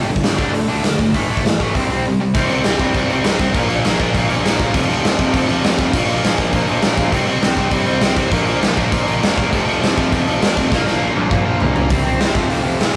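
A tight, double-tracked distorted electric guitar and a growly, fuzz-laden picked bass open this urgent, raw punk rock excerpt together at the very start, with a big acoustic rock drum kit joining at 0.2 seconds. At a straight 201 BPM in 4/4, the guitar drives a bright, up-front power-chord riff through D5, A5 and C5 before settling into a cycle of Bb5, F5 and C5 shapes. The bass sits in the background, punchy and overdriven, while the up-front kit brings a punchy kick, a medium-tuned snare, hi-hat, crash cymbal and toms ringing in a bright stone room. A drum fill from 10.7 to 11.9 seconds pushes into a closing turn on C5 and F5 before the cut at 13.0 seconds. The rough rehearsal-room recording carries light reverb and warm saturation.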